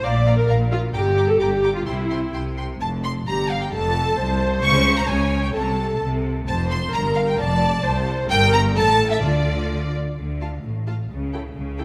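A lively, cheerful classical-period movement for string orchestra in a quick 2/4 at 130 BPM opens with all five sections playing together, a lush violin melody with expressive vibrato over a distant second violin line, up-front smooth violas, focused cello and close double basses, moving from F major into D minor at 8.3 seconds inside a moderate scoring-stage reverb, in a short passage cut from a longer piece.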